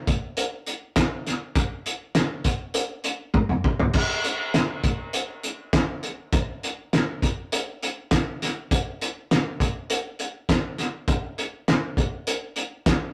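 Rock drum kit alone at 101 BPM in a straight 4/4, reflective and dusty in mood, heard as a short passage cut from a longer piece. The cloth-damped kit of kick, snare, toms, hi-hat and crash sounds thuddy and muffled, with a fat snare, tight kick, dark cymbals and a rolled-off top, sitting up front with gritty saturation, and a fill breaks the pattern from 3.3 to 3.9 seconds. The rough rehearsal-room capture carries tube saturation and a moderate small-room reverb.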